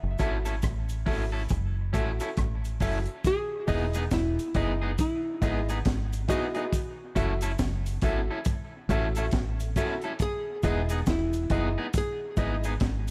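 Sunny and warm, this short section of a longer roots reggae piece moves at an unhurried 69 BPM in 4/4, with a swung sixteenth-note feel in E major. A dark, clean hollow-body archtop guitar carries the picked melody, treated with dub echo, while a deep, round, foam-muted fingered bass sits up front in the low register. Just after the start, at 0.2 seconds, a twangy electric guitar at the edge of break-up adds picked accompaniment with its own dub echo, and a woody, slightly detuned upright piano supplies stabs. A crunchy breakbeat kit with a punchy kick, high-tuned snare, rim click and hi-hat brings a gritty, saturated, rolled-off sound from a small room, and a vintage, band-limited cabasa shimmers in the background. The harmony rocks between F#m7 and Emaj7 under light reverb, with the second section arriving at 3.2 seconds.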